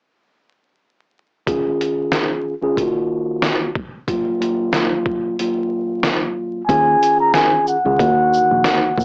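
A mellow tine electric piano and a gritty, pitched-down sampler-style drum kit open this reflective boom-bap hip-hop excerpt in Eb minor at 92 BPM with a swung 16th feel, moving from Db/Eb to Ebmadd9 through cassette tape, vinyl crackle and a small-speaker sound, the thumpy kick dropping out from 5.4 to 6.7 seconds, before a veiled, breathy bucket-muted trumpet enters up front at 6.7 seconds with scooped, whispered jazz phrases over a round, dark fingered electric bass.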